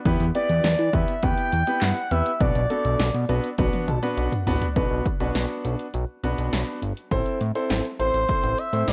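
A driving, cool synth-pop fragment at 102 BPM opens on a punchy analog drum machine with handclaps, hi-hat, snare and toms, a fat, detuned sawtooth bass with a moving filter sweep, and a clear, intimate grand piano whose action noise is audible, while a smooth, vibrato-laden portamento lead with chorus and tape echo sings from 0.3 to 3.5 seconds and returns at 8.0 seconds. All of it sits in a worn, warbling cassette-tape haze with light digital ambience, as drum and piano fills carry the move from Em and Bm7 into Bm before the harmony shifts to Am.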